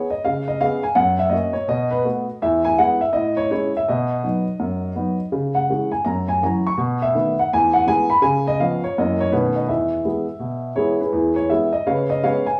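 Swung eighth notes in a brisk 4/4 drive this exuberant stride piano passage, cut from a longer piece. A lone upright piano carries everything, ranging from E2 up to C#6, with a dark, woody tone, long sustain and audible action noise that keeps it intimate and up front. The harmony moves through changes such as Amaj7, C#m, B7 and a B9 turning back to E, giving the swing a lively, bouncing pull. One full phrase runs from the start to 11.1 s, and a fresh pass of the same material begins there before the clip ends at 12.6 s. A moderate, roomy studio reverb and live ambience surround the instrument, lending the mellow sound a sense of space.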